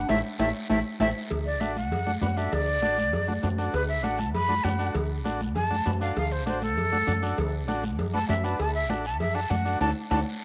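Cumbia with a sunny, danceable mood, this excerpt moves at a brisk 198 BPM in 4/4 with a straight feel in D major. A breathy jazz flute carries the melody up front, its soft attack, vibrato and lifted highs giving it an expressive, airy glow, and it takes a solo from 1.3 seconds to the end. Underneath, a woody fretless electric bass sounds dark, round and punchy, with a hollow-body tone placed close in the mix, while a vintage combo organ adds reedy, lightly vibrato-tinged accompaniment. A distant, whispered clarinet with subtone and scooped notes offers a brief second line only until 1.1 seconds. Bright, thin-skinned congas, a raspy close guiro, and ringing, band-limited timbales and cowbell drive the rhythm, with a drum fill at 0.9 seconds and band accents at the opening and closing moments. A moderate spring reverb lends the whole a sense of space.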